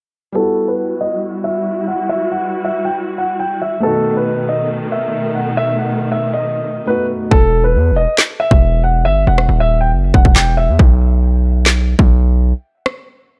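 A studio ambience frames this tense, cold excerpt of drill-style hip hop at 138 BPM in a half-time feel, set in E harmonic minor. It opens on a hushed bed of felt-muted upright piano, soft and intimate in the background, under a dark symphonic string section that brings bowed, lush ensemble chords with vibrato and a smooth top, all moving from Emadd9 to B7 while a filter sweep shapes the opening. Above them, a dark concert grand piano carries the melody in a mellow, natural voice with deep bass, its tape echo trailing the line. At 7.3 seconds the strings and upright piano drop away, and a distorted 808-style bass arrives up front, heavy and aggressive with a saturated noise layer and a fast attack that decays, alongside an electronic drill kit of handclaps, rim clicks, a woody snare and a hard-clipped kick with a tape-warmed finish, its hi-hats muted throughout. The grand piano drops out partway through this second section, and a brief break from 12.5 seconds leaves the drums to close the cut.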